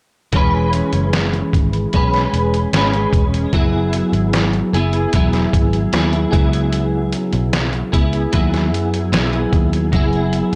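A dry, gritty recording with little reverb carries this short cut from a longer indie and bedroom pop piece in E major, moving at a laid-back 75 BPM in a straight 4/4 with a hazy mood. A clean, compressed electric guitar sits up front, its picked accompaniment shimmering through ensemble chorus and vibrato as the harmony moves from E6 to F#9sus4 at 3.5 seconds and C#m11 at 6.3 seconds. Underneath, a dark, foam-muted vintage bass adds round, punchy low notes, while a pitched-down, sampler-style trip hop kit brings a thumpy kick, a medium-tuned snare and hi-hat, all three parts playing from 0.3 to 10.6 seconds.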